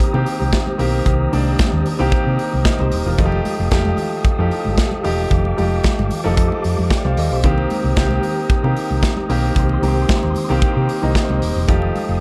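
This is a driving, sultry disco groove in C dorian at 113 BPM in a straight 4/4, cut from a longer piece and running about 12.2 seconds. A clear, intimate baby grand piano sits up front with audible action noise, playing accompaniment over chords that move between Cm7 and F9. Beneath it, a hollow-body short-scale electric bass played with the fingers gives a dark, round, amped tone and is the loudest part. A polished acoustic drum kit keeps hi-hat, punchy kick and a medium-tuned snare up front and airy. A soft, flute-like tonewheel organ holds sustained chords with key click, chorus vibrato and a fast rotary speaker, while bright, high-tuned congas struck with hard hands sit in the background. Light reverb and a small room ambience give the whole production a dark, warm feel.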